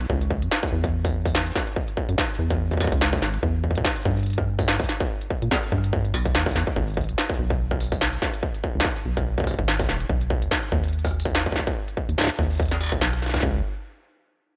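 Cerebral and intricate, this IDM piece, cut from a longer track, moves in 4/4 with a swung sixteenth-note feel and sits in a dry, rough home-demo mix. A deep, rubbery acid bass with a resonant square-wave pluck and tube saturation carries a filter sweep from 0.1 to 13.4 seconds. Up front are a distorted electronic kick and an industrial kit of clanging snare, smooth hi-hats, rim clicks and struck metal, the kit touched with tape echo.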